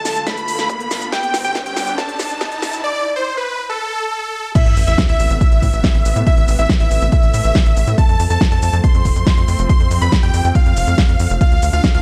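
An emotional, bittersweet stretch of uplifting trance at 140 BPM in A minor opens on bright, detuned supersaw chords carrying the melody through a low-pass filter and tape echo, joined by a catchy plucky unison lead with dub echo and a lush unison pad with chorus and phaser in the background, all three pumping with sidechain, while a riser and sub drop and a drum fill from a big-room dance drum kit with a huge snare and crisp hats build over a punchy, up-front electronic kick toward the drop at 4.6 seconds, where a tight, driving sawtooth sequencer bass enters at 4.7 seconds under chords moving from Amadd9 to F, the whole thing set in light reverb within a dark production.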